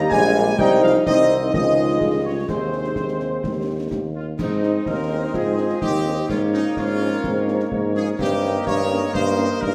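A clear, loosely played trumpet section carries the proud melody of this spirited military-style wind band march in 2/4, over an up-front but roomy tuba bass, a warm woodwind second line, a dark euphonium and mellow French horns in the background, very quiet distant trombone chords, and concert snare, bass drum and dark-toned clash cymbals, all in a wet scoring-stage reverb, in a short cut from a longer piece.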